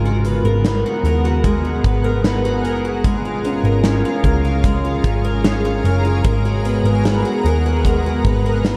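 Up front, a bright, octave-doubled twelve-string acoustic guitar picks shimmering arpeggios through lush chorus and tape echo, setting a hazy, melancholic tone for this dream pop excerpt in G# dorian at a slow 75 BPM in straight 4/4. Beneath it, a vintage muted electric bass sits close and round, its foam-muted, amped tone giving the low end a dark, punchy weight. An ethereal pad holds sustained chords, its detuned unison voices, slow attack and long release wrapped in chorus and its own reverb, with a granular, octave-up glow. A huge arena drum kit enters at 0.2 s and stays in the background, its punchy kick, medium-tuned snare and hi-hat carried by a pumping hall sound. The harmony moves from G#m9 to A#m7/G# at 3.0 s and back to G#m9 at 6.2 s, all within a dark, warm production with a moderate studio reverb.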